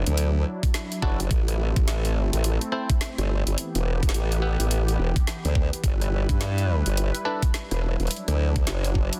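A swung 106 BPM glitch hop groove in 4/4 struts with funky swagger, driven by an overdriven, knocking electronic kick set up front beside a layered drum kit of woody snare, rim click and bright hats in a small room, while a formant-filtered pulse-and-sine wobble bass sits up front with chorus, a smooth, detuned sawtooth analog pad pumps through Dadd9, Am and Em, and percussive, stringy clav stabs played through a combo amp, with 12-bit sampler grit, sidechain pumping and delay, enter at 1.0 s, the whole excerpt cut from a longer piece and mastered dense and heavily limited with little reverb.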